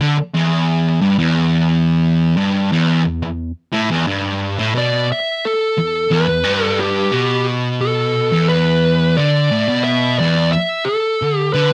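Metal at 88 BPM in E minor, heavy and ominous, where a warm, double-tracked fuzz guitar grinds out a low riff from the start, joined at 4.8 seconds by a dark, compressed fuzz lead guitar carrying a high melody with slapback echo, both up front in a dry, close 1970s-style studio sound as the harmony holds on Em before shifting to D5 at 10.5 seconds.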